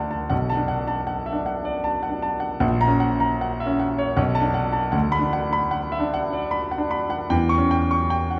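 A clear, smooth grand piano with a vintage tone and short sustain plays a stormy, bittersweet romantic character piece at 77 BPM in 3/4 with flexible rubato, tuned to A4 = 445 Hz, moving through Bm7 and F#/A# before settling into B minor at 4.9 s and closing on C#dim/E, its up-front voice heard from further back in a reverberant recital hall across this 8.4-second cut from a longer work.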